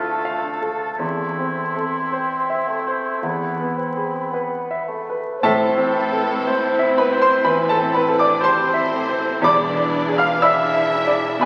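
A clear baby grand piano carries the melody up front throughout this short, tragic and passionate passage from a romantic movement for piano and orchestra in A minor, moving at a slow, rubato 52-62 BPM in 4/4. For the first 5.4 seconds the piano is joined by woodwinds: an airy, hollow flute, a distant oboe and a clarinet in the background each trace second lines, while a mellow, vintage-toned bassoon supplies accompaniment. At 5.4 seconds the orchestra shifts to strings and brass, as a lush violin section with vibrato shares the melody and a second line, a rich viola section fills in accompaniment, and a dark, tight French horn section holds sustained chords in the background. A very quiet cello section and a double bass section in the background anchor the bass, with very quiet timpani struck with medium mallets adding weight until 10.9 seconds. The harmony moves from D minor through A minor and E before closing on E7, and the whole passage sits in a wet scoring-stage reverb with the crackle of a very old 78 rpm record.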